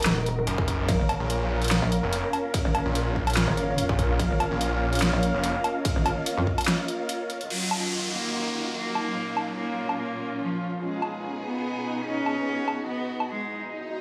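Heavy, aggressive wobble dubstep at 145 BPM in a half-time feel, this excerpt opens on a drop where a snarling, detuned saw bass and a metallic, chorused wobble bass growl up front over punchy electronic kicks, a huge snare and bright hats, while lush bowed strings and a cloudy granular pad pump beneath in minor chords. The basses fall away before a brief break at 6.7 seconds, and a rich, floating solo cello with tape echo takes the melody at 7.5 seconds as a filter sweeps across the strings. A downlifter enters alongside the cello, and a swell closes the passage, which is cut from a longer piece.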